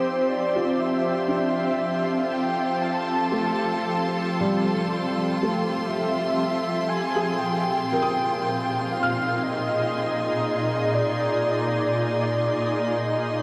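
Luminous and peaceful, this ambient excerpt drifts at a slow 59 BPM in straight 4/4, cut from a longer piece and resting on just two chords, Fmaj7 and then Absus2 at 6.9 seconds. A breathy, flute-like synth lead carries the melody between C5 and A5, its soft, warbling vintage tone colored by vibrato, ensemble chorus, shimmer reverb and delay. Beneath it, a shimmering pad holds sustained chords from Bb2 to C5, bright and up front, with an ethereal octave-up shimmer, detuned unison and a granular edge. A felt-muted upright piano plays intimate, mellow arpeggios with short sustain, touched by shimmer reverb and delay, while a rich studio violin section adds a bowed, expressive texture with vibrato. All four parts sound together through the full 13.4 seconds, bathed in a huge, wet ambient reverb with a 7.7-second decay.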